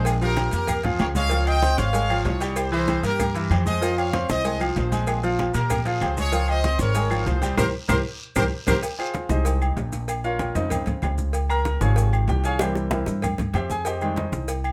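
Up-front punchy horns carry the melody with light vibrato through the opening, then a band accent at 7.6 seconds hands the spotlight to a clear, polished grand piano solo, while pizzicato upright bass, bright low-tuned congas, ringing timbales with agogo bells, cowbell and bongos, woody claves, grainy maracas and a raspy guiro keep this danceable, passionate salsa moving in F minor over light reverb.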